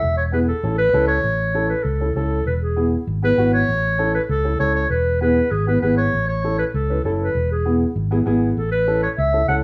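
Cumbia in A major at 196 BPM, this sunny, festive excerpt from a longer piece sets a warm, soft-attacked solo clarinet carrying the melody in a roomy, distant classical style over a round, amped fingered electric bass and a woody, mellow upright piano that enters at 0.3 seconds, all moving between E and A chords in a moderate studio reverb.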